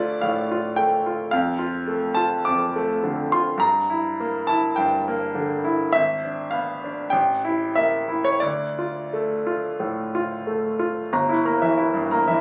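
Classical romantic character piece for solo piano in D minor, bittersweet and stormy, moving in 4/4 with a rubato feel somewhere between 84 and 112 BPM and tuned slightly low to A4 = 438 Hz. A bright grand piano carries everything alone across the full 12.4 seconds, spanning G1 to D6 with a brilliant, polished tone, short sustain and an up-front presence. The harmony moves from D minor through half-diminished and diminished colours before resting on an open A chord and returning to D minor around 8.4 seconds. A brief new section begins at 11.1 seconds on a diminished chord, where this fragment of a longer piece breaks off. The sound carries light reverb and studio ambience, caught on a phone in the room with some compression.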